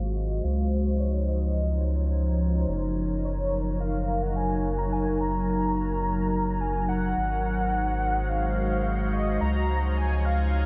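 This short IDM passage, cut from a longer piece, opens with all three parts sounding together from 0.0 s: an icy glass pad holding sustained chords, a round analog bass, and a velvety synth lead carrying the melody high above. The mood is playful and glitchy, moving at 107 BPM in a straight 4/4 in Gb lydian, with the harmony shifting from Dbadd9 to Gb6, then Ab7 at 7.2 s, and back to Dbadd9. The pad is crystalline and airy, its detuned layers roughened by vintage 12-bit sampler grit and softened by chorus and its own reverb. Beneath it, the bass is deep and mellow, sitting up front with a gentle tube-saturated weight, while the smooth, full-bodied lead sings with vibrato, chorus and a diffuse ambient delay. A filter sweep runs across the whole passage, and the dreamy mix is soaked in a huge ambient reverb with a low-pass filter that keeps the edges hazy.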